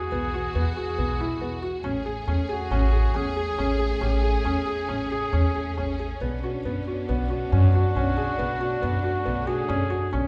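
Restless and hypnotic, this contemporary chamber piece in 5/4 sets a breathy, whispered flugelhorn melody with light vibrato over soft, felt-muted upright piano arpeggios with audible action noise, lush bowed strings holding sustained chords, and a woody, dark pizzicato upright bass sitting up front, all bathed in the wet reverb of a recital hall as the harmony moves from Eadd9 to Amaj7 to Bmadd9.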